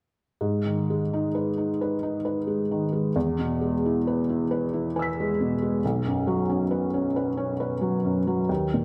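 Reflective and wistful, this short neoclassical minimalist piano piece, cut from a longer work, drifts in a rubato 6/8 at 45 BPM in G# minor, tuned to A4 = 439 Hz. A felt-muted upright piano plays alone from 0.4 to 8.8 seconds, spanning B1 to B6 with a soft, mellow, intimate tone sitting up front, its thin felt dulling each note. The harmony moves from G#m to E at 3.1 seconds and settles on Bsus2 at 5.8 seconds, all wrapped in light reverb.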